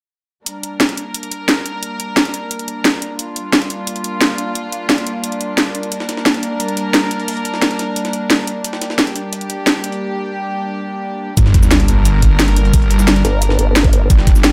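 Futuristic and aggressive, this dark technical drum and bass cut at 176 BPM in G minor opens with warm, reedy bowed strings holding sustained chords under sidechain pumping alongside an overdriven, up-front kit of cracking snare and bright hats, adds a very quiet, gritty jungle sampler-style kit at 5.9 seconds, and after a break from 10.0 seconds drops at 11.4 seconds into a knocking electronic kick, a background sub drop, and a swirling, thick phased saw bass, joined briefly by a nasal vowel-sweep wobble bass with chorus, all in light reverb.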